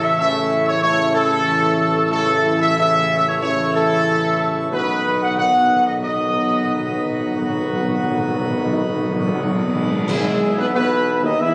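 Classical ceremonial fanfare cut from a longer piece, majestic and triumphant at 92 BPM in a straight 4/4, moving through A, B and E/G# chords. An up-front trumpet section with a warm tone and light vibrato carries the melody over sustained chords from a background French horn section, a very quiet close-miked trombone section and a full, brilliant plenum pipe organ with baroque voicing, mixtures and chiff, while a mellow tuba with light vibrato holds the bass. Close, dry timpani with medium mallets enter with a fill at 4.7 seconds, dark cymbals and concert bass drum join at 7.4 seconds, and a band accent lands at 10.1 seconds, all set in a wet scoring-stage reverb captured by a phone in a club-like room.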